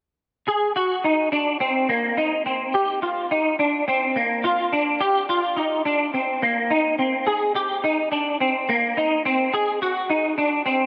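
A straight 4/4 pulse at 106 BPM carries this short dream pop excerpt, ethereal and blissful in mood, tuned to A4 = 441 Hz. A lone semi-hollow electric guitar plays from 0.5 to 10.9 seconds, fingered and clean with a dark, hollow-body tone, sitting up front between Bb3 and Ab4 and coloured by ensemble chorus and delay. A huge ambient reverb with a 4.2-second tail surrounds it, and a new section begins at 9.5 seconds.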